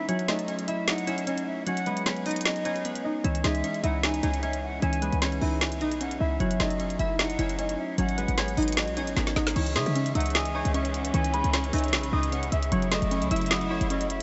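Hip hop in a trap vein, this dark, hard-hitting fragment of a longer piece moves at 152 BPM with a half-time feel in C# minor, tuned slightly flat to A4 = 435 Hz. A ringing, thumb-plucked concert harp carries the melody over glassy digital keys whose chorus, phaser and filter sweep give the accompaniment a bright, shimmering edge. A breathy, hollow jazz flute adds a distant second line, and both harp and flute trail off into a diffuse ambient delay. The trap kit, with its woody snare and crisp hats, sits up front, and a punchy, tight 808-style bass joins at 3.2 seconds after the opening break. A drum fill leads into a new section at 9.6 seconds, where a clear, biting bowed string section enters in the background with sustained vibrato chords over the C#madd9 and F#m7 changes. The whole mix is dreamy and soaked in a huge ambient reverb, its top end softly rolled off.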